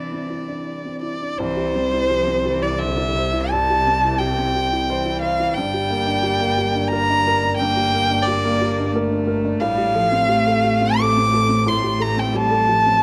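A bowed solo violin sings the melody up front with a focused, vibrato-rich tone and a smooth top, while a cello in the background carries a soft-attacked second line with expressive portamento. Beneath them, a dark, woody upright piano with audible action noise and long sustain supplies the accompaniment in a gently rubato 3/4, and a distant bowed double bass enters at 1.4 seconds. This fragile, melancholic neoclassical excerpt drifts from C to G minor to F over A, all in a light studio reverb.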